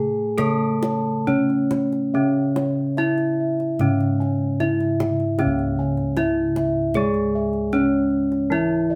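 Shimmering and hypnotic, this short cut from a longer Javanese gamelan piece sets a ringing, horn-mallet bronze metallophone melody up front over a bright, mid-forward metallophone accompaniment and a full, round, close-miked bass line on bossed gongs. High above, a mellow, band-limited metallophone with padded disc mallets spins soft arpeggios, and from 0.4 s a second set of padded bossed gongs adds quiet arpeggios in the background. Also entering at 0.4 s, a tight, dry kendang played with hard hands keeps time until 8.4 s, all captured as a live ensemble in one room with moderate studio reverb.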